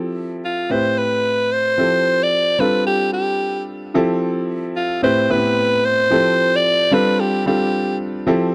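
A clear concert grand piano opens this short R&B cut at 111 BPM, its deep-bassed, natural chords cycling through Fmaj9, Am9 and G7sus4 with a swung sixteenth-note feel. At 0.4 seconds a raspy, gritty alto saxophone takes the solo melody, its edgy, close-miked pop tone sitting up front beside the piano. The dry, close 1970s-style studio sound keeps the punchy, bouncy mood intimate as the progression repeats into a second section at 3.9 seconds.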